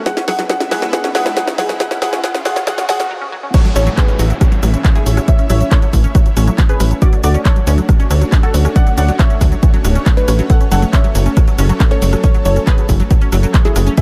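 Uplifting trance excerpt, euphoric and emotional, where a short build-up with a drum fill and a brief break gives way at 3.5 seconds to a drop led by a punchy, up-front analog kick and, from 3.8 seconds, a tight, ring-modulated sawtooth sequencer bass, under a lush detuned unison pluck melody with digital delay, bright chorused arpeggios, a full-bodied supersaw pad pumping in the background, a very quiet dark, boxy grand piano second line, a layered techno kit with a cracking snare, crash, claps, hi-hat, rim click and shaker, and background risers and downlifters, all in a dry, close mix.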